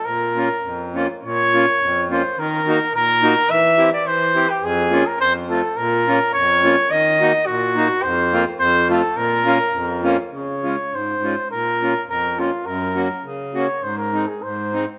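This alpine folk fragment from an alpine dance band sounds jolly and bouncy, moving in a loose, rubato two-beat metre. A mellow trumpet carries the melody from the very start, playing solo in a classical style with a distant, roomy tone. A moment later, an accordion enters at 0.1 s as accompaniment, its single-reed sound reedy, clear and boxy, with a dry tuning. Over a minor-leaning progression that circles through Bbm, Ebm and F, the music shifts at 10.3 s into a brighter section built on Db, Gb and Ab. The moderate reverb of a recital hall gives the pair a gentle sense of space, and both parts play through to 14.9 s.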